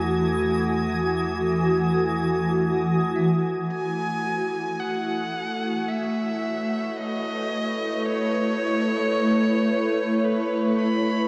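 Ambient music in free time and A lydian, weightless and dreamy, opens with an up-front granular cloud pad of blurred, evolving chords and a calm, organ-like drone in the background, together with a brief, very quiet clean semi-hollow guitar arpeggio, a deep round sub bass that fades out, and a twinkling, sparkling granular texture, before a rich, smooth electric violin melody with vibrato and diffuse delay takes the lead at 3.7 seconds, all soaked in huge reverb with a cassette-tape character.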